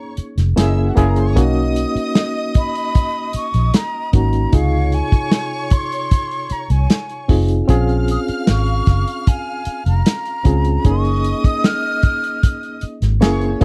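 A dry, close 1970s-style studio sound frames this lush, mellow soul passage at 76 BPM in a straight 4/4, moving through Gb6, Cbmaj7, Dbmaj7 and Bbm7 chords. A breathy, hollow silver concert flute sings the melody with vibrato over a smooth, bowed violin section, while a reedy, barky electric piano with light overdrive and fast tremolo fills in the accompaniment. At 0.2 seconds a dark, round, foam-muted fingered bass and a warm soul drum kit with a tight kick and medium-tuned snare join up front, and the flute drops out at 12.8 seconds as the others carry on.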